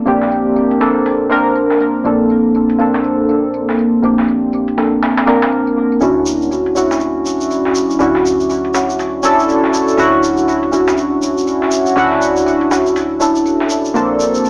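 Soulful deep house with a swung sixteenth-note feel, cut from a longer piece, where glossy, retro stabs from an up-front chorused polysynth with digital delay ride over a deep, moody ambient pad sitting in the background under a filter sweep, a soft, round FM bass adds woody low notes, a gritty, compressed breakbeat kit of hi-hat, high-tuned snare and tambourine keeps time, and a grainy, bright tube shaker joins at 6.0 s as the chords move from Bbmaj9 to Dmaj9, all heard through a moderate room reverb with a small-speaker character.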